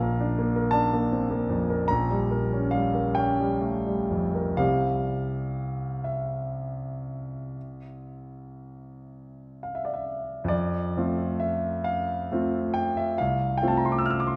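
A clear, natural concert grand piano sits up front with deep bass in this dreamy, nostalgic romantic nocturne excerpt, unfolding in 12/8 with free rubato across a span from Bb1 to F6, its harmonies drifting from Bb through Gm7b5/Bb to C before settling on F at 10.5 seconds as a new section begins, all bathed in the wet bloom of a recital hall.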